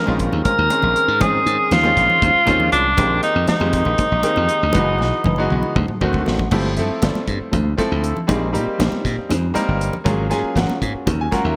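A clear, vintage-toned tenor saxophone leads this nocturnal, funky stretch of electric jazz fusion, carrying the melody up front with vibrato and scooped notes through a digital delay until it drops out at 6.0 seconds. Beneath it, a punchy slap bass sits prominently in the mix. A brilliant grand piano with short sustain fills in the harmony, and a dark, compressed electric guitar adds very quiet, clean stabs. The groove moves at 237 BPM in 7/8 with a straight feel, driven by a modern studio drum kit with a tight kick, smooth rolled-off cymbals and gated reverb, plus thin-skinned, damped congas in the background. Lush sus4 and thirteenth chords shift over an Eb dorian center, and a drum fill starting at 5.0 seconds, joined by a piano fill at 5.8 seconds, leads into a second section at 6.5 seconds. The sound is a bright 1980s-style digital production bathed in a moderate hall reverb, and the passage is cut from a longer piece.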